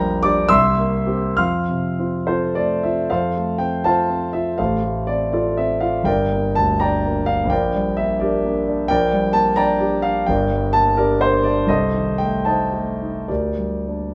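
Stormy and bittersweet, this brief excerpt from a romantic character piece for solo concert grand piano, warm with deep bass and placed up front, moves in a rubato 6/8 at 64-90 BPM through F major before darkening into G minor from 8.9 s, ranging from G1 to F6 with chords such as C7, F/A and Adim/C in a moderate large studio reverb.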